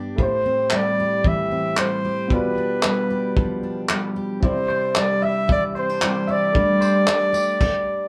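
A picked steel-string acoustic guitar, dark and full-bodied with a touch of finger squeak, opens this sunny, easy-going acoustic pop passage at 113 BPM alongside an intimate concert grand piano whose action noise can be heard in the background. From 0.2 seconds a close-miked, punchy flugelhorn carries the melody up front over a muffled, thuddy cloth-damped drum kit with handclaps, tambourine, tight kick and dark crash cymbal, while a bright, twangy clean electric guitar adds background arpeggios from 4.7 seconds. The band sounds as if playing live in a small reverberant room, moving through Am7, G7/B, Cadd9 and Gsus2 before a stop at 7.6 seconds.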